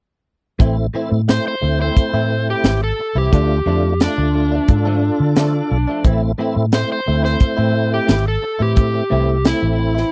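An overdriven slide guitar carries the melody from 1.3 s, its fingered, up-front tone warm and singing in the range from D4 to C5 over a brooding, soulful straight-eighth soul blues groove at 88 BPM in A minor. Beneath it, a tight funk drum kit sits close and dry, with a high-tuned snare, a tight kick and hi-hat driving the straight 4/4 feel. A vintage muted fingered electric bass adds a dark, round, punchy foam-muted line, amped and up front. A direct-recorded clean electric guitar jabs in with bright, twangy, compressed picked stabs coloured by ensemble chorus, while a tonewheel organ fills out the accompaniment with a full, lightly overdriven sound turning through a slow rotary speaker and chorus vibrato. The harmony moves from Am to Dm at 3.3 s and back to Am at 6.1 s in this short cut from a longer piece, captured as a dry, close 1970s-style studio recording with little reverb.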